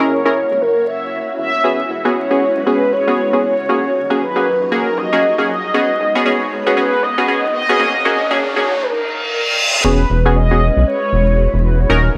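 A deep house groove at 117 BPM in 4/4 rides a 60% swing on the sixteenths, setting a deep, warm mood in this cut from a longer piece. Up front, a mellow, horn-like synth lead carries the melody between A#4 and E5, round and gently vibrato-tinged, dressed in lush chorus and delay. Beside it, a muted, detuned dub chord stab sits forward in the mix with chorus and delay, while a silky vintage string machine holds soft sustained chords underneath through phaser and ensemble chorus. A rubbery, hollow square bass bounces between D#1 and D#2, dark and resonant with a plucky filter edge, over chords moving from F#7 through E6/9, D#m7 and G#m7. A filter sweep builds from the start, and an electronic riser enters at 3.6 seconds, giving way to a reverse cymbal that leads into the drop at 9.8 seconds. The sound sits in a moderate echo-chamber reverb with digital ambience and vinyl crackle.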